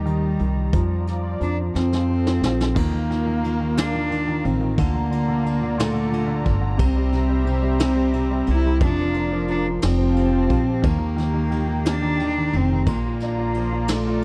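A dark, bowed cello carries the heartfelt melody with vibrato and a slapback echo over clear baby grand piano, a detuned analog pad with chorus and a woody pizzicato upright bass in this tender six-eight pop ballad in Bb major at 59 BPM, while a vintage brush drum kit with dark cymbals joins at 0.1 seconds and plays a fill from 1.7 to 2.8 seconds, all captured in a dry, close 1970s-style studio sound.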